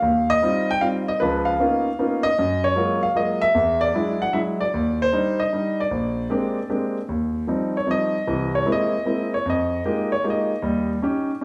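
A concert grand piano opens this short jazz excerpt on an Eb6/9 chord, setting a playful, relaxed mood in 3/4 at 153 BPM with a swung eighth-note feel in Eb major. The piano is the only instrument, sitting up front with an intimate, natural tone, deep bass, long sustain and audible action noise, and it spans from Bb1 up to G5. The opening passage moves through rich extended harmony, including Db13, Gbmaj9 and E9, before settling back on Ebmaj7 and Bb13. At 7.1 seconds the music turns to a new passage that is heard as the piano's solo, running through C7alt and Fm11 toward an Eb7 at 10.6 seconds. A large studio reverb with a 1.2-second decay gives the playing a live, roomy glow.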